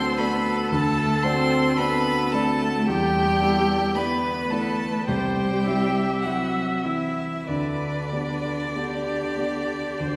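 This serene slow movement for piano quintet opens with all five players together in G major, the rich first violin singing the melody up front with smooth vibrato over a mellow, dark baby grand piano and a cello whose expressive portamento traces a second line, all moving at a rubato 46-57 BPM in 4/4. A more distant second violin adds its own even line, while the clear viola joins the piano in accompaniment as the harmony passes from D and D7 through Em7 and C to G/D. The 10.2-second fragment is heard from further back in a reverberant concert hall, with vinyl crackle beneath.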